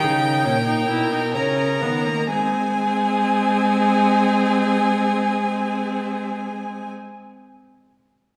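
Contemplative and solemn, this short excerpt from a longer baroque-style fugue for string quartet moves in a straight 4/4 at 60-73 BPM, slowing over its first 2.3 seconds before the harmony settles from D#7 onto G# as a new section begins. Up front, a smooth, even violin carries the melody high above a second violin whose expressive portamento sounds more distant, while a warm viola supplies accompaniment and a focused, close cello anchors the bass, all four bowed with vibrato throughout. A wet church or concert-hall reverb with a 1.8-second decay surrounds the ensemble, tuned slightly low at A4 = 437 Hz.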